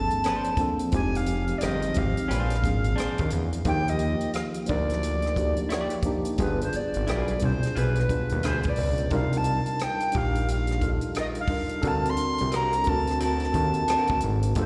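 A bright, reedy tenor recorder carries the melody from the first moment, its airy, straight tone set slightly distant yet up front, while a mellow tine electric piano plays chords through its built-in speakers and a fat, detuned sawtooth bass with a quick filter pluck anchors the low end. This is a smooth, warm neo-soul and R&B cut from a longer piece, moving at an unhurried 88 BPM in 4/4 with a swung sixteenth-note feel. A compact cocktail drum kit enters at 0.1 seconds with hi-hat, rim click and a punchy, dry kick, and an electric guitar through a small old amp joins at 0.2 seconds as a second line, its picked tone slightly broken-up, compressed and lo-fi, dropping out at 14.1 seconds. Slapback echo touches the recorder, electric piano and guitar, and the recorder also carries tape echo. The harmony drifts through lush extended chords, from Bbmaj9 and Fm9 toward G7b9, Cm11 and a closing D7b13. 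The whole performance sounds like a live gig heard through the venue's PA, with light reverb and the bloom of a recital hall.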